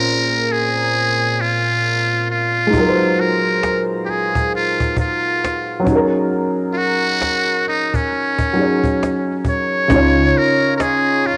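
Lo-fi hip hop in D-flat major at a relaxed 67 BPM with a swung 4/4 feel, this mellow, cosy excerpt is cut from a longer piece. A trumpet with a metal mute carries the melody up front from the start, its tone buzzy and raspy with breathy vibrato and scooped notes in a growling jazz style. Beneath it, a dark upright piano with audible action noise and a slightly detuned, woody sustain plays the accompaniment through Bbm9, Ab13 and Gb69, coloured by cassette tape. A snappy, close and dry cajon enters at 2.7 seconds, also carrying a cassette tint. As the harmony settles on Db at 9.9 seconds, the hi-hats drop out and a thumpy, gut-strung upright bass plucks a single Db for a moment, all set in a moderate spring reverb with the feel of a home recording on cassette.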